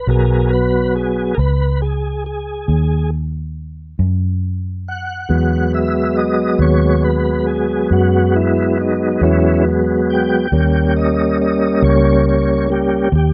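A slow blues in 12/8 at 46 BPM, counted in dotted quarters, with a brooding, smoky mood in G# minor, cut from a longer piece. A tonewheel organ carries the whole 13.3 seconds with sustained chords, its smooth, clean tone set up front and colored by a slow rotary speaker and chorus vibrato. Beneath it, a vintage muted fingered electric bass holds down the low end throughout, sounding dark, round and punchy with a foam-muted, amped character. The harmony moves from G#m7 to Emaj7 at 5.3 seconds and then to D#7 at 10.5 seconds. Light reverb surrounds a rough home demo mix that keeps both parts close and present.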